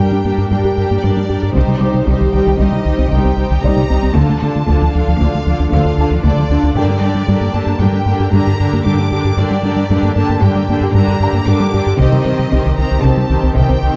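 In a straight 5/4 at 115 BPM, this brooding, futuristic cinematic cue in G minor blends orchestral and electronic scoring. A lush violin section carries the melody over a second violin line, with a rich viola section in accompaniment and a cello section holding the bass in the background, all bowed with vibrato. A deep, round analog bass riff, a soft pluck's arpeggios washed in chorus and digital delay, and a very quiet felt-muted upright piano with audible action noise fill out the dark production, set in a moderate scoring-stage reverb of about 2.0 seconds and cut from a longer piece.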